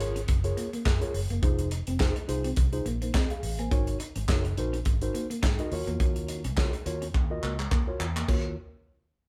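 Up-front acoustic drums with a punchy kick, mid-tuned snare, hi-hat, handclaps and crash drive this slick, funky early-eighties boogie funk excerpt alongside a dark, round, foam-muted fingered bass, a mellow, clean tine electric piano and a picked semi-hollow guitar riff tucked in the background, the band playing live together in a lightly reverberant room, with a drum fill arriving at 7.1 seconds.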